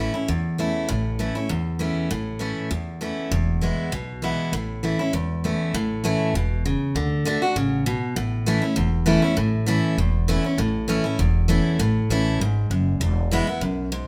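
Bluegrass at a brisk 198 BPM in 4/4 with a light swing on the eighths, this short cut from a longer piece has a rustic, lively mood in A major. A picked steel-string acoustic guitar carries the accompaniment up front, its dreadnought body sounding bright and full-bodied as it moves through A, E and D chords. Beneath it, an upright bass plays pizzicato in a low register, giving a woody, warm foundation from the first moment to about 14.0 seconds. The harmony shifts to E at 3.3 seconds, returns to A, then moves to D at 7.0 seconds before settling back on A and closing on E at 13.0 seconds. A moderate large-studio reverb surrounds the duo, lending the acoustic sound a sense of roomy space.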